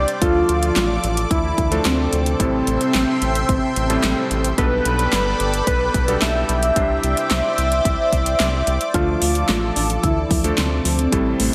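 A thick, dark unison lead with delay carries the melody over a quiet, pure synth bell, a lush detuned pad with chorus, phaser, 12-bit grit and sidechain pumping, clangy electric grand piano stabs, a round analog bass and punchy overdriven kick and pop drums with fat snare, metallic hats, handclaps and gated reverb in this driving, nocturnal synthwave excerpt, joined at 8.9 seconds by a tine-like synth pluck playing arpeggios over chords moving from Dm through Am7, Gadd9 and Csus2.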